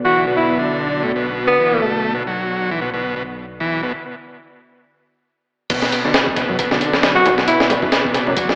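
Funky and gritty, this short breakbeat cut runs at 135 BPM in 4/4 with a swung sixteenth feel, sitting in B minor pentatonic over a Bm chord. From the start, a clear, punchy alto saxophone sits up front, heard in brief phrases from 0.0 to 1.9 seconds and again near 7.2 seconds, its tone pinched by a small-speaker quality, 12-bit sampler grit and tape echo. Beneath it, an overdriven combo organ plays a buzzy riff with heavy vibrato, tube saturation and a low-pass filter, while a warbly, nostalgic tape-like pad holds chords in the background with chorus, built-in reverb and sidechain pumping as a filter sweep moves across it. A dark, detuned saw bass rumbles deep and mellow underneath, and after a break from 3.9 seconds the drop lands at 5.7 seconds as a sampler-style breakbeat kit arrives up front with a thumpy kick, high-tuned snare, hi-hat and crash, pitched up and compressed with tape echo. 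Very quiet, bright congas played with hard hands join briefly, and the whole mix is soaked in a wet spring reverb with an echo-heavy, AM-radio character.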